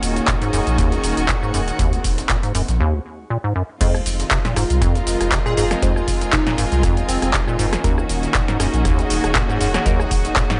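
A raw, driving acid house excerpt at 119 BPM in F phrygian, with light reverb and a slightly dulled top end, built on a deep electronic kick, an up-front electro analog drum machine with punchy snare, metallic hats, handclaps, cabasa, rim clicks and crashes, and a very quiet, gritty, pitched-up breakbeat kit underneath. A squelchy, resonant square-wave acid bass riff and a round sine sub bass pump under sidechain beneath a rich, bowed symphonic string section carrying 12-bit sampler grit and a breathy, chorused pad, moving from Ebm7 to Fm7 and back. After a break from 2.8 to 3.8 seconds, the drop brings in dark, detuned dub chord stabs through phaser and analog delay, while a catchy, detuned unison lead with tape echo sits in the background between 5.5 and 7.3 seconds.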